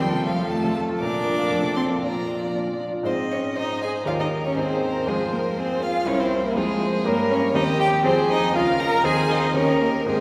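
Spirited and graceful, this quick classical-period movement for piano quartet moves at 120 BPM in a straight 2/4, starting in Bb major and shifting to Ab major at 3.1 s in a short cut from a longer piece. A single violin carries the melody with a clear, focused, close tone and vibrato, reaching up to D6. A second violin of richer colour and a clear-toned cello, both bowed with vibrato, weave second lines beneath it. The grand piano supplies the accompaniment up front, its open sound and long sustain spanning from C2 to Db5. After the move to Ab major, the harmony passes through F minor, a diminished chord and a Bb minor chord over Db before settling on Eb7. All four players sit in the generous wash of a church or concert hall, whose wet reverb lingers for about 3.2 seconds.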